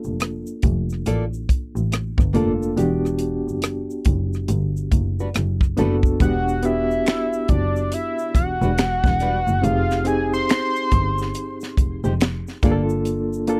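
Swung sixteenths at 70 BPM in 4/4 drive this sultry, introspective neo-soul R&B groove in E minor, where a tight funk drum kit with a high-tuned snare and a soft egg shaker with finger snaps play alongside a rich, bowed double bass and a reedy, lightly overdriven electric piano with fast tremolo, while a fingerpicked flamenco guitar adds a second line from 1.1 seconds with audible finger squeak, and a fat, detuned analog lead carries the melody from 6.2 seconds, captured in a dry, close 1970s-style studio sound.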